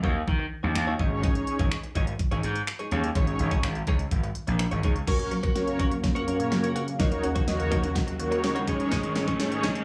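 A straight 4/4 dance-pop pulse at 125 BPM drives this energetic, bittersweet excerpt, with a layered electronic drum kit of knocking kick, fat snare, crisp hats, finger snaps and crash sitting up front beside a gritty, overdriven slap bass that pumps against the sidechain until 5.0 seconds. A clean, direct electric guitar riff with analog chorus runs throughout, joined at 1.0 seconds by mellow, detuned sawtooth synth brass with vibrato and a filter sweep over chords moving between Ebm7 and Absus4. From 5.1 seconds a build-up takes over with a drum fill, a smooth analog pad with tremolo, a woody FM pluck playing arpeggios through digital delay in the background, and a faint riser that enters at 7.3 seconds, all set in light small-room reverb.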